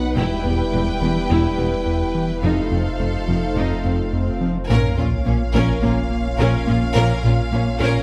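Tense and vast, this cinematic cue blends orchestral strings and brass with analog synthesizers in a straight 4/4 pulse, cut from a longer piece. Dark, woody violins carry the high melody with soft-attack vibrato, while a second violin section adds an intense, distant line beneath, and a rich viola section with expressive portamento sits in the background. Cellos and double basses reinforce the low end, the basses bowing smoothly and evenly, joined by a round, square-wave analog bass riff and a deep sub bass that doubles at the octave. A mellow, roomy French horn section holds sustained chords until 7.2 seconds, as a detuned sawtooth pad with chorus glows softly behind. The harmony moves from E minor to F7, and at 4.7 seconds an electronic swell gives way to a sub-drop impact as the music settles onto B-flat minor. Light reverb and close, detailed miking keep the strings vivid.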